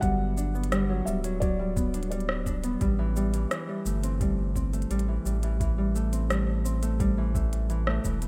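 A rough home-demo mix bathed in digital ambience carries this delicate, playful folktronica excerpt, where a soft, felt-muted upright piano offers a brief delayed melody until 2.6 s over ringing, thumb-plucked Celtic harp arpeggios with delay, a round, deep analog bass up front, a muffled, thumpy overdriven electronic kick and an organic electronic kit of crisp hi-hats, rim click and shaker, as the chords move from Gmaj7 to Am7 at 2.8 s.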